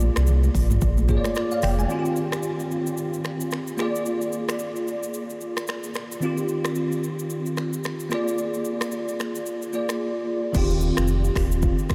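This short cut from a longer afrobeats track is dreamy and soaked in a huge ambient reverb with an 8.1-second tail, giving it a hazy, sunny glow. At 111 BPM in 4/4 with a swung sixteenth feel, it sits in Eb major and moves between Bb7 and Eb69 chords, carrying a romantic mood. A bell-like, bright and clean tine electric piano plays the accompaniment up front throughout, thickened by an ensemble chorus. An electronic afro-pop drum kit runs the whole length, with a deep kick, crisp hats, finger snaps, rim clicks, shaker, toms and crash cymbal. Damped, high-tuned congas with a thick skin add a very quiet, close touch only in the opening 1.9 seconds. A full, sustained sub bass with an octave, sine-and-triangle in tone and sitting forward in the mix, plays at the start and returns at 10.5 seconds.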